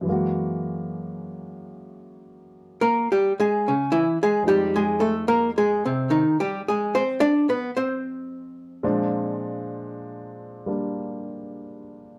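A dark, clean archtop guitar with a hollow-body tone carries the melody up front, entering at 2.8 s and ending at 11.0 s in this romantic, late-night jazz ballad at a slow, swung 55 BPM. Beneath it, an intimate baby grand piano with audible action noise plays a quieter accompaniment over Gb9, Fm9 and Bb9 chords. A moderate studio reverb surrounds this brief passage cut from a longer piece.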